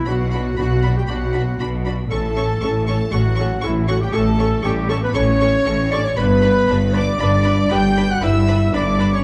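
Heroic and triumphant, this brief cue from a cinematic adventure score moves at 117 BPM in a straight 4/4, passing from B minor through A to G by 6.2 seconds. A rich, focused violin section carries the melody over a bright, intense second violin line joined by a dark, soft-attack solo clarinet, while clear trumpet stabs ring out over mellow, roomy French horn chords and a distant viola accompaniment. Underneath, smooth cellos and up-front double basses anchor the bass, all set in a moderate scoring-stage reverb with a dark, warm production.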